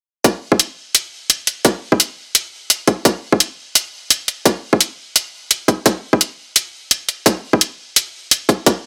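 A half-time drum and bass groove at 171 BPM in 4/4 rolls with a light swing on the sixteenths, giving this short cut from a longer piece a cinematic, tense mood. An electronic kick drum and electronic hi-hat play together from 0.2 to 8.7 seconds, both layered, overdriven and up front in a small room ambience. The tight kick carries a high-pass filter, while the bright hats sit over it in a dry mix.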